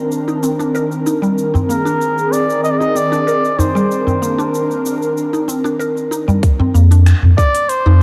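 Organic downtempo in C minor at 95 BPM, this short cut from a longer piece has a warm, hypnotic mood in a straight 4/4. An airy, breathy pad holds sustained chords up front with chorus, sidechain pumping and shimmer reverb, while a woody, mallet-like FM pluck spins mellow arpeggios through tape echo and vintage 12-bit sampler grit. A crisp-hatted electronic kit of cabasa, finger snaps, hi-hat and toms sits underneath, joined by a small, close and dry udu from 1.5 seconds. A cup-muted trumpet enters at 1.7 seconds with a veiled, jazz-style solo line carrying light vibrato, its smooth top washed in tape echo and shimmer reverb. The harmony moves from Cm9 to Bb9sus4 and back before shifting to F5 at 6.4 seconds, where the pad stops and a tight electronic kick punches up front, followed at 6.7 seconds by a deep, round sine sub bass on F2. The whole mix has a gritty, dry hardware character with transformer saturation and cassette tape coloring under light digital ambience.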